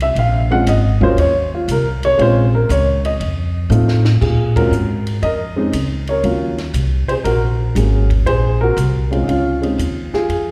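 This jazz piano trio excerpt, cut from a longer piece, has a moody, swinging feel in 4/4 with a strong swung lilt. A dark, mellow upright piano carries the melody up front, taking a solo over the opening 4.2 seconds; its intimate, vintage tone has short sustain, audible action noise and a slapback echo. The pizzicato upright bass sits close and woody, its steel strings giving a warm tone. Further back, a compact cocktail kit in a tight booth adds dark cymbals, a high-tuned snare and a punchy kick, with a drum fill from 3.7 to 4.2 seconds leading into the next section, followed by a band accent at 4.5 seconds. Minor-seventh harmony shifts through a suspended major chord and a dominant turn before settling into a new section, all heard as a live gig through the venue's PA with recital-hall reverb and small-room ambience.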